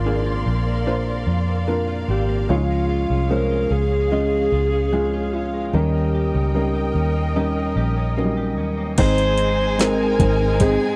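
A dark, roomy alto saxophone with subtone and vibrato carries the melody, touched by a slapback echo, in this hopeful, tender pop ballad fragment from a longer piece. Around it sit a mellow felt-muted upright piano, lush bowed strings holding sustained chords, a clean electric guitar with analog chorus picking arpeggios in the background, and a round, punchy muted bass up front, all in a dry, close 1970s-style small-room sound. At 9.0 seconds a smooth-topped violin section adds a second line and a produced R&B drum kit with a soft kick, woody snare, metallic hats and crash arrives as the harmony resolves to Ab.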